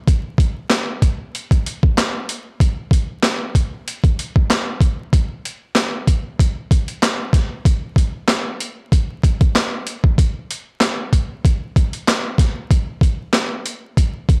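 A boom bap sampler-style drum kit sits up front in this short hip hop cut, pairing a thumpy kick with a high-tuned snare, handclaps and hi-hat. The kit has a compressed, sampler-style character at natural pitch, a gritty edge to its hits, and it was re-recorded in a large room. The groove sits in 4/4 with a light swing on the sixteenths, giving the beat a loose, head-nodding feel. The drums enter at 0.1 s, and the arrangement moves into a new section at 5.1 s that carries through to the cut at 14.4 s. Overall the recording is dry, with little reverb, a gritty hardware sound and a bed of vinyl crackle that suits its gritty, dark mood.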